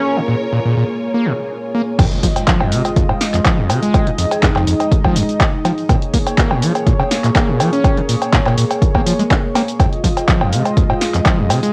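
A mellow, chorused analog pad, a squelchy, distorted acid bass riff and a distant, lush string section all pump together through cassette tape, setting up a raw, driving acid house cut taken from a longer track. At 2.0 s the strings drop out as a punchy electronic kick and an up-front drum machine of snare, handclaps, hi-hat, cabasa, cowbell and crash hit together, with a background electronic impact underneath, while the pad and gritty bass keep cycling between Bbm7 and Fm7. A brief, airy vibraphone note with tape echo rings faintly at 4.3 s, all within a moderate room reverb and a lo-fi home-cassette sound.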